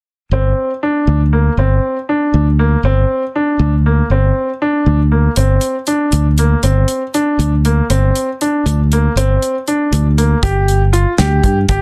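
Brooding and driving, this progressive instrumental excerpt moves in 5/8 at 237 BPM in eighths, settling on G minor before shifting to a G5 chord at 10.4 seconds. A clear, intimate baby grand piano plays arpeggios up front, its action noise audible and its notes sustaining long, while a fingered electric bass holds the low end with a direct, upfront tone. At 5.4 seconds a damped 70s drum kit enters with hi-hat, a tight kick and a medium-tuned snare, sounding dry with a rolled-off top, all set in light reverb within a dense, heavily limited modern master.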